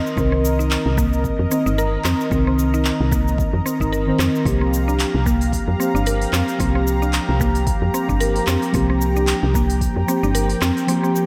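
Earthy and warm, this organic downtempo excerpt moves at 112 BPM in 4/4 with a gentle 16th-note swing in C minor pentatonic, shifting from Cm7 to Gm7 at 4.5 seconds. Muted, felt-like synth keys with a warbling vintage tone and a mellow, detuned analog pad both carry chorus and sidechain pumping, while a round, mallet-like FM pluck plays arpeggios through chorus and a diffuse ambient delay that the keys share. A woody FM bass sits up front beside a tape-tinged, layered electronic kick and a deep house kit of cabasa, handclaps and smooth hi-hat, the mix resting in a lush hall reverb that lends a dreamy haze.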